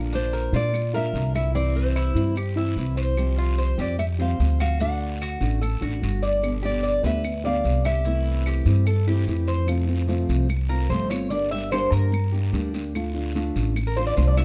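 A dark, lightly reverberant production frames this sunny excerpt of Cuban son and guajira in a straight 4/4 feel, with an up-front, thumpy pizzicato upright bass on gut strings beneath a full-bodied, fingerpicked nylon-string guitar accompaniment whose finger squeak comes through. A second nylon-string guitar with fresh strings carries the fingerpicked melody through plate reverb from 0.1 to 9.4 seconds, while the Cuban tres picks metallic, double-stringed arpeggios throughout and takes a solo from 9.7 seconds. A raspy guiro sits close and dry alongside grainy maracas and compressed, saturated claves, both tucked into the background.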